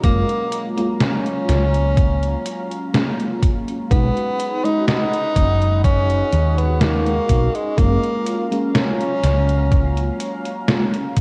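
Hazy cassette-tape sound with light reverb and lossy compression artefacts wraps this short, dreamy and woozy vaporwave excerpt, drifting between lush major-seventh and sixth chords. Up front, a breathy, subtoned tenor saxophone sings a jazz-style solo with vibrato and scooped notes through tape echo until 10.6 s, over a dark, detuned FM electric piano with a soft pad layer, tremolo and ensemble chorus, while a warbling, nostalgic tape-like pad with 12-bit sampler grit sits mellow in the background. Underneath, a round, hollow-bodied fretless bass stops at 10.1 s, and a thumpy electronic kick pairs throughout with a detuned 8-bit drum machine whose hi-hat and medium-tuned snare carry gated reverb, both re-recorded in a large room.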